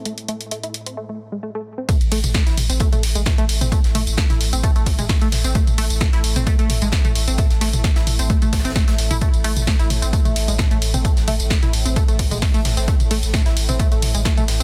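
A dense, heavily limited modern master in a digital ambience carries this dark, intense excerpt of driving peak-time techno in A minor at 131 BPM. A tight, detuned sawtooth synth riff with a filter pluck, chorus, phaser and delay pumps over a moody, wave-folded pad drone and a punchy, tape-warm analog drum machine of hi-hat, ride, snare, tambourine and toms, before a short break from 1.0 seconds. The drop at 1.9 seconds brings in an up-front electronic kick, a thick, saturated triangle sub bass under a low-pass filter, and a very quiet, airy fusion kit with a high-tuned snare.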